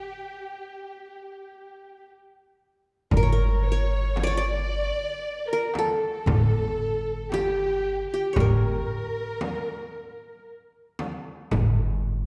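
Opening this hypnotic, longing excerpt of Arabic maqam ensemble music in 10/8, a bright-edged, plectrum-plucked qanun carries the melody up front while a dark, lush bowed violin section with vibrato traces a second line alongside it, and at 3.1 seconds a thumpy pizzicato upright bass on gut strings joins a crisp, distant metal-shell darbuka and a close, dry frame drum, the ensemble ringing in the generous reverb of a church or concert hall.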